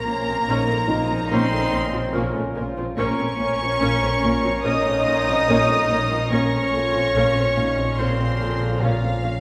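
A wet recital-hall reverb surrounds this mysterious, eerie excerpt of a suspense film score, held over a single Bbmadd9 chord. A dark, woody violin section sings the sul tasto melody with vibrato while a clear, present solo clarinet carries a second line, joined by a soft second violin section and a high, floating violin texture. Beneath them, a viola section, two intimate cello sections playing the bass and a riff, a double bass section, vintage French horns, a very quiet bright trombone section, a mellow baby grand piano with audible action noise, a metallic, warbling drone with chorus and phaser, and a pulsing gated texture entering at 0.2 s fill out the low, shadowy harmony.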